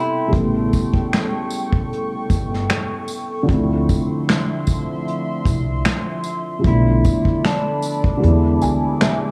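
A lightly swung 4/4 groove from a brushed vintage kit with finger snaps, hi-hat, tight kick and snare settles in at 0.3 seconds, alongside woody, thumpy pizzicato upright bass, with a faint, jingly tambourine joining shortly after, giving this reflective, nostalgic lo-fi hip hop fragment its relaxed pulse. Up front, a felt-muted upright piano plays soft, boxy accompaniment with audible action noise and a cassette-tape tint over A7, Dm9, Bm7b5 and E7, while a warbling, detuned tape-like pad sustains chords beneath with chorus and reverb. A dark, slightly broken-up electric guitar through a small old amp carries the brief melody with tape echo, returning at 6.7 seconds, and the kick drops out from 8.2 seconds in a small, intimate room.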